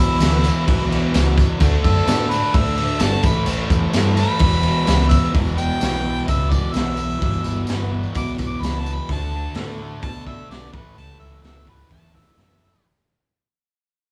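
Menacing and swaggering, this garage rock cut from a longer piece struts along at 128 BPM in a straight 4/4, centered in E dorian with a dry, close sound. A bright, double-tracked fuzz guitar drives the riff up front with compressed, picked distortion. A growling, overdriven electric bass anchors the low end with a warm, amped tone. A raw acoustic drum kit enters at 0.2 s and brings a roomy small-room character, a punchy kick, a medium-tuned snare, hi-hat and crash, with a rolled-off top. A jingly, vintage tambourine sits in the background until 9.0 s. A clear harmonica with light vibrato, overdrive and analog delay carries the melody throughout and takes a solo from 5.3 s as the track fades out.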